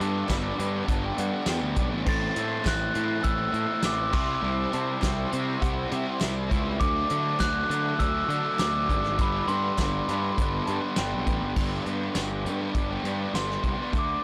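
Indie rock at 101 BPM with a cool, bittersweet mood, this blown-out, overdriven excerpt moves through G, Am, C and D, led by a mellow, bell-like glockenspiel with rubber mallets and digital delay entering at 2.1 seconds over an up-front fuzz bass, a soft brush drum kit with a fat snare and dark cymbals, crunchy and bright distorted guitar riffs in the background (one with analog chorus), a clean tine electric piano with medium tremolo, and very quiet crisp group handclaps.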